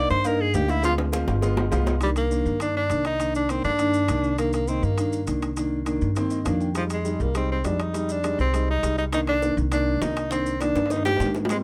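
In this sultry, fiery Afro-Cuban jazz excerpt in C minor at 202 BPM, tenor saxophone solos up front with vibrato, scooped notes and a smooth top over woody upright piano and a pizzicato upright bass with steel strings, while background maracas add a grainy, vintage texture. Tight, high-tuned cowbell and bongos drop out at 2.0 seconds and return at 9.1 seconds, and ringing metal-shell agogo bells and timbales sit close and dry throughout. Drum fills and a brief piano fill at 6.2 seconds punctuate the lively flow under light reverb.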